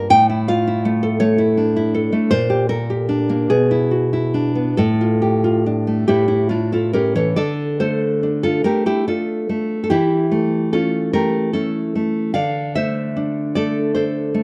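A fingerpicked nylon-string guitar sits up front, its full-bodied, deep classical tone carrying this wistful, intimate romantic piece in D minor, played alone in 6/8 at a slow, rubato 46-56 BPM. The harmony drifts from A through Gm/Bb, E7/B and Dm/A before a second passage opens on Dm at 7.4 seconds and moves through A7/E to settle on a bare D5 at 12.3 seconds. Light reverb surrounds the guitar in an outdoor recording with lossy compression artefacts, and the clip is cut from a longer piece.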